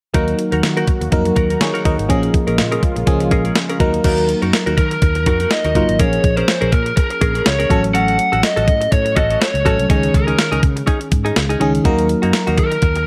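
Lightly reverberant and polished, this uplifting, romantic 1980s-style pop excerpt moves at 123 BPM with a gentle 16th-note swing, as a glassy, bell-like FM electric piano with chorus and phaser, a thick, warbling detuned unison pad in the background that drops out at 4.0 seconds, a chorused and delayed direct-recorded clean guitar riff, a round fretless bass and an up-front, thumpy 12-bit drum machine support an overdriven lead guitar melody that enters at 4.8 seconds.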